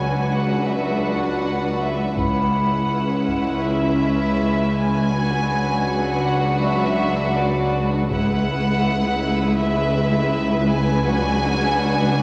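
A wet scoring-stage reverb surrounds this mysterious, uneasy suspense film-score excerpt, where a distant violin section carries the melody over a clear second violin line, a lush, close viola accompaniment, a cello section and a very quiet double bass section holding a low bass, a tense, string-like drone, and a very quiet, metallic vibraphone, while a close taiko ensemble struck with heavy sticks enters at 2.2 and again at 8.1 seconds.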